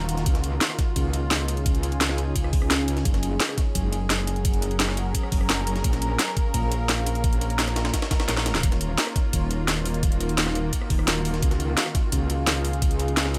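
A swarming, detuned drone, a metallic wobble bass and a warbling tape-like pad open this excerpt together, setting a dark, aggressive drum and bass mood at 172 BPM in straight 4/4. The FM bass sits up front, saturated and compressed with a chorus sheen, while the granular drone holds tense, evolving chords with long reverb tails and a sidechain pump that it shares with the nostalgic, lo-fi pad, which adds phaser and chorus shimmer. From 0.1 seconds an up-front drum kit with a cracking snare, bright hats and rim clicks comes in alongside a gritty, pitched-up breakbeat kit with a high-tuned snare, ride and filtered cymbals tucked into the background, and at 0.3 seconds an overdriven, knocking electronic kick joins to drive the beat. The harmony moves from Db through Gbadd9, Bbm7 and Ebm before returning to Db, and a brief drum fill at 8.3 seconds leads into the arrival of Ebm. Light reverb frames the mix, with the drums carrying a small-room character.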